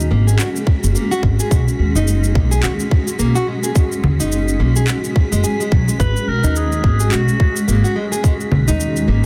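Hypnotic and warm, this short section of a longer organic downtempo piece moves at 107 BPM in G# minor with a swung 16th-note feel, resting on a single G#m7 chord throughout. A woody, pizzicato upright bass sits up front with sidechain pumping, joined from 0.7 seconds by a tight electronic kick drum re-recorded in a large room, while an electronic shaker, handclaps and congas add a produced percussion layer. A bright, fingerpicked nylon-string guitar plays classical-style arpeggios through a digital delay, with finger squeak audible on its fresh strings. Behind them, a blurred, detuned granular cloud pad holds evolving sustained chords with built-in reverb and sidechain pumping, and a dark, breathy wind-like noise texture drifts quietly in the background. At 6.0 seconds a distant, roomy clarinet steps in with a brief solo melody colored by delay, all set in light reverb with a dense, heavily limited modern master.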